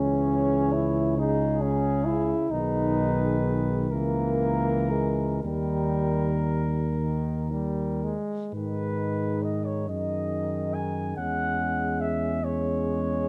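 A dark, close-miked tuba anchors this yearning, elegiac hymn-like classical passage for brass band in a rubato 6/8, beneath a mellow, punchy flugelhorn melody, a clear euphonium with light vibrato, a soft-attacked trombone and a distant, roomy French horn section holding a second line in the background, all in light reverb.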